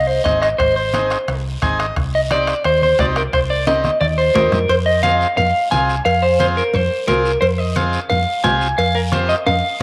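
Awash in wet spring reverb with studio ambience, this fiery, danceable cumbia excerpt at 176 BPM in 4/4 puts a dark, clean picked electric guitar melody up front with slapback echo, over a round, punchy hollow-body short-scale fingered bass and a buzzy vintage combo organ that adds a fill at 1.5 seconds, while low-tuned thick-skinned congas, a soft-beater bombo that stops at 4.7 seconds, and ringing metal-shell timbales and cowbell sit in the background alongside a raspy, saturated guiro, moving from Ab through Cmadd9 to Fm with drum fills closing each half.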